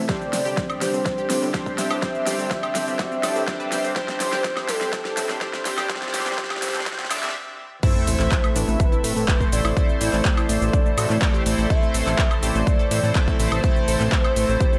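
An emotional, expansive progressive house excerpt in A minor at 124 BPM opens with a very quiet lush pad, a background unison pluck playing delayed arpeggios and glossy chorused polysynth stabs over a fat analog bass, joined at 0.1 seconds by a velvety synth lead with vibrato, a big-room kit with a huge snare and metallic hats, and a punchy overdriven kick, all building under filter sweeps and a drum fill until a brief stop at 7.3 seconds gives way at 7.8 seconds to the drop, marked by an impact and a quiet sub drop as the harmony moves from Csus2/A to Am.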